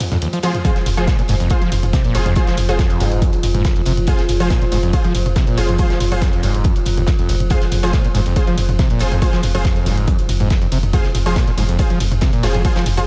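A screaming, squelchy acid line drives this dark, intense peak-time techno excerpt, its resonant sawtooth filter sweeps soaked in distortion, 12-bit sampler grit, chorus and analog delay, all pumping against the heavy, up-front electronic kick that arrives at 0.6 s. Thick, detuned rave stabs with a bright filter pluck and a round, overdriven sub bass pump alongside it, while a punchy, tape-toned analog drum machine adds hi-hat, ride and toms. In the background, an eerie metallic FM drone hovers with chorus and reverb, and a very quiet acoustic studio kit adds soft hi-hat and snare, all in a lightly reverberant mix with a rolled-off top end.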